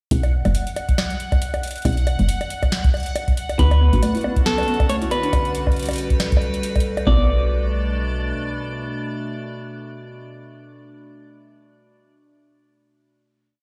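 A woody, round FM bass carries a dub-style line under an eerie, intricate IDM groove at 138 BPM in B minor, where a booming analog drum machine with crisp snare, metallic hats and bongos glitches over a deep, broken electronic kick, while a bubbling stepped-filter texture holds a high note, a bell-like tine electric piano and a clean semi-hollow guitar melody arrive at 3.6 seconds, and an icy glass pad enters at 4.0 seconds and sustains through to the final Bm7 chord at 7.1 seconds in a large, roomy reverb.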